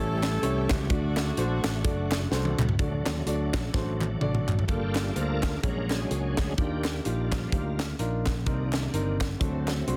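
A dense, heavily limited mix with light reverb and a small-room feel frames this soulful, solemn uptempo gospel excerpt at 127 BPM, swung in 4/4, where an edgy, punchy saxophone section carries the melody until 2.3 seconds over a warm grand piano, a punchy, amped fingered bass and a crisp, airy drum kit with a high-tuned snare and up-front kick. Background handclaps add a close, human snap, while a bright, shouting tonewheel organ, lightly overdriven with fast rotary speaker and chorus vibrato, holds sustained chords before taking a solo from 4.7 seconds. Drum fills mark the turns between sections, and the harmony moves through rich chords such as Gm9, Bb7alt and Ebmaj9 before landing on D7.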